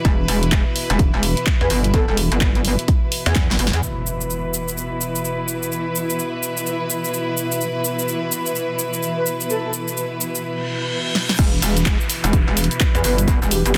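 A dense, heavily limited bass house excerpt at 127 BPM in E minor, bouncy and aggressive, with a swung 16th-note feel. A soft-attack chamber string section holds sustained chords throughout under sidechain pumping and a low-pass filter, while a metallic, saturated wobble bass with a filter sweep and a punchy up-front kick drive the opening; the layered house kit of snare, handclaps, hi-hat, shaker and crash runs the whole way. Drum fills, an impact at 3.8 seconds and a blurred granular pad carry the breakdown, brief breathy flute-like synth lead phrases with tremolo and tape-like delay drift in, and a reverse cymbal leads into the drop at 11.4 seconds, where bass and kick return.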